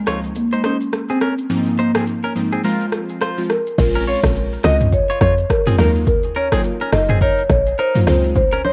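A soft-mallet marimba opens this smooth, mellow afrobeats excerpt at 105 BPM in Bb minor, its round, boxy melody coloured by tape and analog delay, as glassy, detuned digital keys with chorus, a clean, twangy direct-recorded electric guitar riff with delay, and an up-front, overdriven deep house kit with a deep kick, rim click, shaker, toms and crash settle into a swung 16th-note groove. At 3.8 s a punchy, woody log drum bass arrives as the harmony moves from Dbmaj7 and Fm toward Bbm7 and Ebmadd9, and bright congas and bongos slip in quietly behind everything else at 8.4 s. The home cassette sound has a dull, rolled-off top and light digital ambience.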